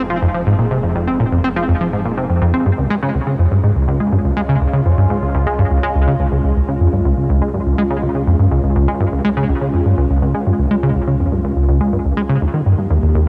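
A detuned sawtooth pad fades in over the full 13.3 seconds of this excerpt, its resonant, evolving chords, treated with chorus, sweeping over Fm7, Db and Eb in a mysterious, expansive stretch of ambient, sequencer-driven space music at 123 BPM in a straight 4/4. Up front, a punchy, funky analog bass riff with a fast filter pluck and decaying tail carries the motion, colored by subtle chorus and analog delay, while a very quiet, round sine-and-square sub bass sits deep beneath. A huge ambient reverb and cassette tape grain lend the whole recording a hazy, spacious sheen.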